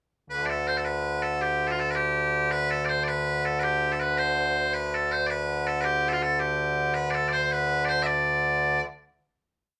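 Bright, piercing bagpipes carry a driving, spirited Celtic jig on their own from 0.3 s, playing a continuous, motif-based melody in periodic phrases in 6/8 at 108 BPM to the dotted quarter. The pipes sit loud and up front in a moderately reverberant studio room, holding the tune until 8.8 s before the whole piece closes on a final hit at 9.2 s.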